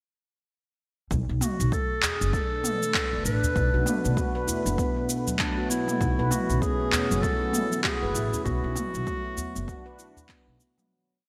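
This hypnotic, mystical organic downtempo piece in B dorian opens at 1.1 seconds on a swung 98 BPM groove. A detuned sawtooth pad with chorus and sidechain pumping sustains Bm7, A and D in the background, over a woody pizzicato upright bass riff that also pumps, a punchy overdriven electronic kick, and a tape-toned kit of handclaps, shaker and low toms. A classical-style clarinet then plays call phrases through digital delay, up front. A deep, dry udu follows, and at 3.6 seconds a ringing, meditative handpan adds a delayed 12-step loop that drifts against the bar, all in a bright 1980s-style digital production with light small-room reverb before the fade-out begins at 7.6 seconds.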